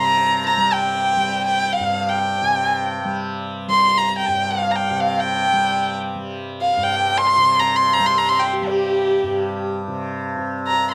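A dark, woody violin sings the melody up front with vibrato, carrying a longing, meditative line of Hindustani classical music in free time. Beneath it, a very quiet sarangi traces a rich second line with gliding portamento, an airy bow and the resonance of sympathetic strings before falling away at 9.7 s, while a bright, buzzing tanpura drone shimmers throughout. The close, dry studio sound has a 1970s character, and this brief passage is cut from a longer piece.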